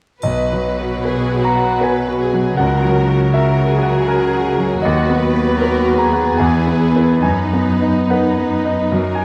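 A bright, brilliant concert grand piano carries the melody up front with deep bass in this lush, passionate romantic movement for piano and orchestra in B major and 3/4, moving with rubato at 68-84 BPM, while distant, intense violins with vibrato sing a background melody and second line, a focused viola section and a smooth, even cello bass fill out the harmony, a dry triangle sounds only until 1.8 s, and the whole excerpt sits in a concert hall reverb with vinyl crackle.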